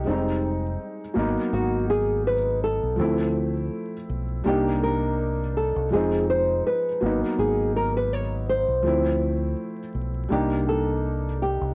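From the first moment, a thumb-plucked nylon-string guitar carries the melody over a felt-muted upright piano and a deep dub bass in this melancholic, nostalgic lo-fi hip hop piece at 82 BPM in 4/4, with a gentle 16th-note swing. The guitar sounds dark and classical, sitting up front between Eb4 and Db5, while the piano's soft, boxy accompaniment stays in a close middle register with its hammer action audible. Beneath them, the fingered electric bass is round, punchy and direct, holding the low end from F1 to D2. The harmony cycles twice through Fm7, Abm7, Dm7 and Cm7, with the chords changing roughly every second or two across the 11.7 seconds. Cassette tape saturation and plate reverb colour the guitar and piano, and the whole recording sits in a modest room ambience with vinyl crackle that gives it a homemade, intimate character.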